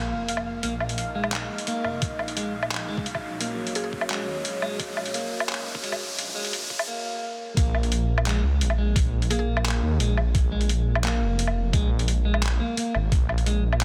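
A saturated, rumbling detuned saw bass anchors this dark, tense half-time drum and bass cut at 173 BPM, where a moody analog pad with chorus, phaser and sidechain pumping, a clean picked electric guitar with dub echo, a bright pulsing gated texture, a very quiet woody mallet-like pluck and an electronic riser fill a filter-swept build-up before a brief break at 6.9 seconds and a drop at 7.6 seconds. A gritty, tape-toned sampler kit of handclaps, hi-hat and woodblock enters at 0.3 seconds and a thumpy, pitched-down electronic kick joins at 2 seconds, both driving the groove through the build-up and the drop.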